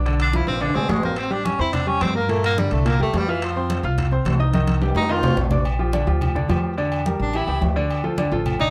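Sophisticated and sunny, this brisk Afro-Cuban jazz excerpt at 214 BPM in 4/4 features a clear tenor saxophone soloing with light vibrato and scooped notes over an intimate concert grand piano with audible action noise, a woody pizzicato upright bass, thick-skinned congas and ringing timbales and agogo bells, with drum fills at 0.5 and 4.5 seconds before the key moves from F major to Bb major at 5.7 seconds.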